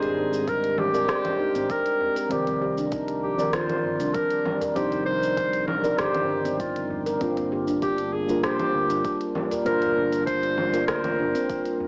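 Heard through a cassette home recording with a small-speaker sound and a wet booth ambience, this warm, earthy organic downtempo excerpt at 98 BPM in C minor moves from Abmaj9#11 to Cm11 to Gm7 as an up-front, classical-style solo clarinet carries the melody through tape, analog delay and plate reverb over dark, muted, felt-like synth keys with chorus and sidechain pumping, ringing, airy nitrided-steel handpan arpeggios from 0.2 s, a round, amped fretless electric bass, an organic electronic kit of congas, crisp hi-hat, rim click and shaker, a deep udu in the background, and a layered electronic kick entering at 0.5 s.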